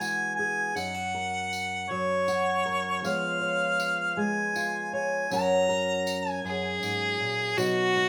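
Gentle and nostalgic, this short acoustic folk excerpt in a slow 6/8 at 53 BPM opens with a clear, roomy harmonica solo carrying light vibrato over fingerpicked steel-string guitar and a jingly tambourine in the background, moving through Eadd9, F#, C#7/E# and back to F#. A focused, close bowed fiddle takes the melody at 6.5 seconds, shortly before the harmony turns to B, all in a moderate studio reverb.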